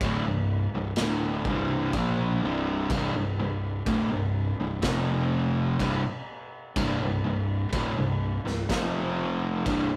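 Stoner and doom metal in a sludgy, ominous mood, this short slice of a longer piece moves in a slow, straight 4/4 and runs about ten seconds. Up front, a double-tracked, picked fuzz guitar carries the riff in a low register, its distorted tone thick and warm as it moves between power chords on C and F. Beneath it sits a fingered electric bass, overdriven and punchy but pushed into the background, holding the deep bottom end. A raw garage drum kit plays kick, medium-tuned snare and crash cymbal throughout, its saturated, gritty sound shaped by a bright stone room that pumps around the punchy kick. The whole take has the rough feel of a rehearsal room, with a moderate studio ambience giving the heavy sound some air.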